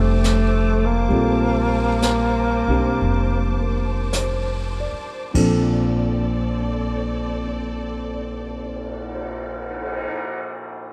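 A tender, late-night jazz ballad in Bb major, swung and slow at 47-72 BPM, this excerpt opens on a Bbmaj9 chord and eases its tempo through the first 5.3 seconds. A breathy, subtoned tenor saxophone with scooped notes and vibrato carries the melody until 4.1 seconds. Beneath it, a concert grand piano with deep bass, a woody pizzicato upright bass, a veiled con sordino string section holding lush sustained chords, and a brushed drum kit with dark cymbals and a boomy kick sit in a moderate concert hall reverb, with the piano ringing on alone to 10.9 seconds.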